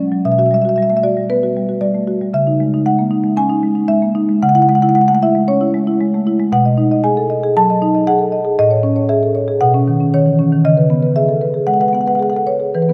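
Contemporary classical for solo marimba, reflective and hypnotic in a loose rubato 4/4, with medium mallets drawing woody, smooth tones from padauk bars placed up front and spanning A2 to A5 through shifting extended harmonies such as Em9/B, C#madd9 and Amaj7, all bathed in a cathedral reverb with a 4.0-second tail inside a dark production, in a fragment cut from a longer piece.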